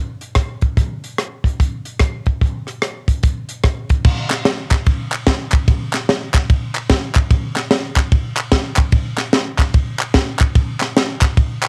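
A crisp fusion drum kit leads this short gospel excerpt, sitting up front with an airy, polished studio-room character, a high-tuned snare and a tight kick, all carried through a cassette tape tone. The kit plays from 0.2 seconds onward, moving across crash cymbal, hi-hat, kick drum, ride cymbal, rim click and snare drum in a swung 4/4 groove. At 4.3 seconds, shortly after the second section begins, a group of handclaps joins, human and close, dry and up front. The mood is hopeful and reverent, and the home cassette recording has very little reverb, giving the whole piece an intimate, immediate feel.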